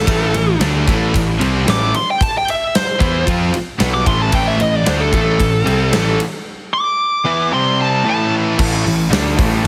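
Hard rock in A minor at 113 BPM, this short, heavy and aggressive cut from a longer piece is driven by a bluesy overdriven lead guitar that plays a solo from the start until 8.3 seconds, ranging from A4 to D6 with distortion and a slapback echo, sitting up front in the mix. Beneath it, three rhythm guitars play the riff in the background: an overdriven semi-hollow guitar with a hollow-body character, a bright, scooped high-gain guitar, and a double-tracked heavy high-gain guitar that drops out at 8.6 seconds. A fuzz-toned picked electric bass adds punchy, overdriven low end from A1 to F2. A huge arena drum kit, natural and roomy with a punchy kick and medium-tuned snare, is placed up front, using crash, splash and ride cymbals along with hi-hat. The harmony rests on A minor before moving to C5 at 7.5 seconds and A5 at 8.1 seconds, and the whole mix carries studio reverb and a heavily compressed radio sound.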